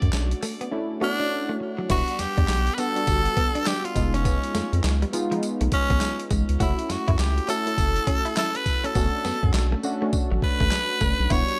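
A punchy, confident fragment of swung new jack swing R&B opens with drums, bass, keys and guitar together. The boom bap sampler-style drum kit sits up front, pitched down and gritty, with a thumpy kick, medium-tuned snare, handclaps, tambourine, hi-hat and crash wrapped in gated reverb. A round, deep analog bass with a dark, wave-folded tone anchors the low end. Mellow, detuned sawtooth keys with a filter sweep and chorus fill in the harmony, while a bright, clean electric guitar, recorded direct, plays a picked riff with tube saturation and lush chorus. At 1.0 seconds a raspy, edgy tenor saxophone takes the lead, close-miked with vibrato, scooped notes and a touch of delay. The chords move through Bm7, Em7, C#7/E#, F#m7 and Bm7/F#, and the hi-hats drop out at 9.0 seconds, all in a dry room.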